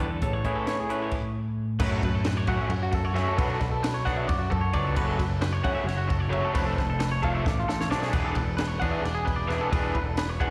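Math rock and midwest emo in a bright, playful 7/8 at 265 BPM, this cut from a longer piece opens with a bright twelve-string electric guitar that drops out at 2.7 seconds, while a twangy guitar picks arpeggios through spring reverb and slapback echo, a raw, double-tracked lo-fi garage guitar drives an overdriven riff, a growly fuzz bass sits up front, and a dry compact cocktail kit with a high-tuned snare, punchy kick and dark cymbals enters at 0.2 seconds, breaks for a stop, and fills at 7.5 seconds over chords moving from Amaj7 through F#m7, Bm7 and Dm6/F to E7, all heard as a live gig through the venue's PA in a small room with recital-hall reverb.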